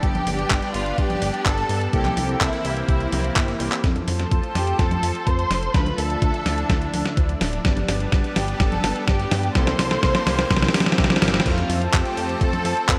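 A thumpy electronic kick and a clean, up-front 12-bit drum machine of fat snare, handclaps, hi-hat, congas and crash cymbal drive this nostalgic, danceable italo disco at 126 BPM in straight 4/4, with a drum fill at 3.4 seconds, while a glossy, mellow chorused synth bass anchors chords moving from G and C7 through F and Dmadd9, a thick, detuned unison pad holds bright sustained harmonies, bold sawtooth synth brass stabs sit in the background, and a symphonic violin section carries the expressive, vibrato-rich melody with a smooth top and delay, all bathed in a lush hall reverb and a 1980s-style digital sheen in this short section cut from a longer piece.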